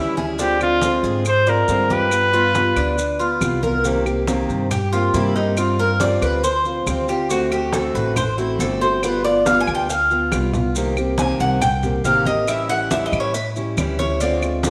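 A vibrato-laden trumpet carries the opening melody, punchy yet distant in a roomy space, over a boxy fingerpicked archtop guitar, a metallic, picked Cuban tres with its doubled strings, and a thumpy, woody upright bass. This danceable, nostalgic excerpt of Cuban son and guajira moves at 139 BPM in a straight 4/4, with bright, low-tuned congas and close, dry claves sitting in the background alongside grainy maracas. The trumpet drops out at 3.4 seconds, and from 3.8 seconds the up-front tres takes a solo of arpeggios over chords such as Cm7, G7sus4, D7 and A7. A drum fill arrives at 10.3 seconds. A wet echo-chamber reverb and studio ambience surround the whole band.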